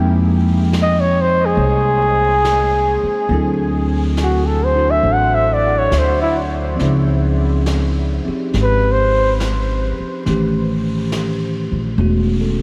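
A mellow flugelhorn with light vibrato carries the melody up front from 0.8 to 9.4 s, its delay washed in huge, dreamy reverb, over a woody, growly pizzicato upright bass, a bell-like tine electric piano with subtle chorus, and distant brushed drums entering at 0.7 s, in this romantic, late-night swung jazz ballad fragment at 70 BPM that moves through Fm11, D9, Dbmaj9 and A7#11 amid vinyl crackle.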